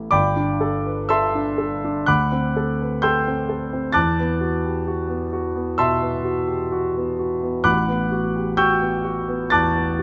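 A clear, natural-sounding concert grand piano, captured up front by close, detailed microphones with deep bass and long sustain, plays a dreamy, serene impressionist classical passage in G major at a rubato 61-67 BPM in 4/4, drifting through Gadd9, D11, Em11 and A13 chords across this 10-second excerpt from a longer piece, with light reverb around it.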